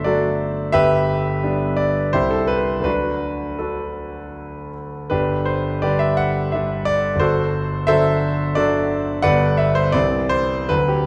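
A clear concert grand piano carries this short romantic character piece alone, its tone intimate and polished, with deep bass reaching down to G1, a top near F#5, and the sound of the action audible up close. The music sits in G major and 3/4 at roughly 74 to 90 BPM, moving with a rubato feel that gives it a hopeful, warm character. The harmony opens on D7 over a G bass, settles onto G, then passes through C and D before returning to G at 5.1 seconds and cycling through the same D7-over-G colouring again. A moderate recital hall reverb, around 1.6 seconds long, surrounds the up-front piano, while the overall production leans dark and warm. Lasting about 11.1 seconds, the passage is cut from a longer piece and ends moving toward C at 9.9 seconds.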